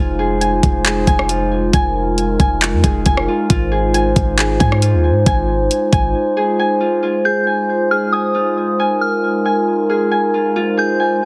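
A glassy, beating glass harmonica holds sustained Fm7 and Ab6 chords over ringing, fingerpicked Celtic harp arpeggios softened by a low-pass filter and digital delay. This opens a melancholic, ethereal cloud-rap excerpt in F minor at 136 BPM with a half-time feel, where a smooth R&B drum kit of knocking kick, tape-toned hats, handclaps and rim click enters at 0.4 seconds beside a deep, boomy, sine-like 808-style bass. Drums and bass drop away by 6.1 seconds, leaving a soft, gentle FM synth bell with chorus, phaser and delay to carry the high melody from 7.3 seconds, all within light digital ambience and a heavily compressed radio sound.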